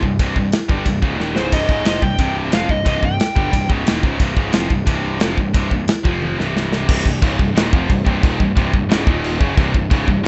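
Dark and aggressive, this heavy metal excerpt in C minor charges along at 179 BPM, with a tight, up-front acoustic drum kit driving china, crash and ride cymbals, kick, snare and toms, while two bright, distorted high-gain guitars, one of them scooped, grind out a low riff over a growly, fuzz-overdriven picked bass sitting in the background. A warm, distorted lead guitar with delay cuts in high above from 1.4 to 3.7 seconds, and after a drum fill the music drops into half time at 6.9 seconds. The rough home demo mix has a small room ambience and a dulled top end.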